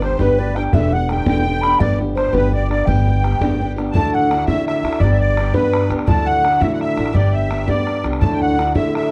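A dry, close recording with a 1970s studio feel and small-room ambience carries this rollicking, lively Celtic jig in G major at 112 BPM in 6/8, where a mellow wooden flute with vibrato and a soft, distant attack leads the melody over a reedy, shimmering musette accordion line, a boxy, up-front picked guitar with finger squeak, a woody pizzicato upright bass and an open, boomy bodhran, all moving between G, Em7 and Dadd9 across this short 9.1-second excerpt.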